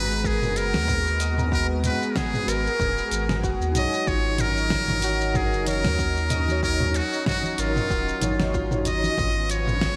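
A relaxed sunset chillout groove at 94 BPM in 4/4, with a swung sixteenth-note feel, a deep house drum kit of hi-hat, shaker, fat snare and toms over a layered electronic kick, a round, sine-like sub bass with tube saturation, and soft, low-tuned congas that enter at 4.9 seconds and stop at 9.2 seconds. Up front, a buzzy trumpet with a metal mute carries the jazz-style melody in G# dorian with light vibrato and scooped notes through a digital delay. Behind it sit a mellow tine electric piano, a thick, warbling detuned pad with chorus, and a ringing fingerpicked concert harp playing arpeggios, all moving through G#m9 and D#m9 to C#13/G#, with a lush hall reverb and bright 1980s-style digital production.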